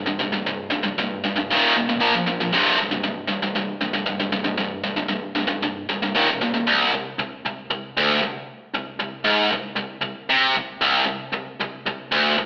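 Metal in C minor at 116 BPM, heavy and dark, with a tight, bright, double-tracked distorted electric guitar playing alone up front from 0.0 to 12.5 seconds, picking power chords on C, E-flat and B-flat, dropping into half time at 6.7 seconds, all soaked in a large studio reverb and squeezed through an AM-radio sound, as if the band were playing live in one room.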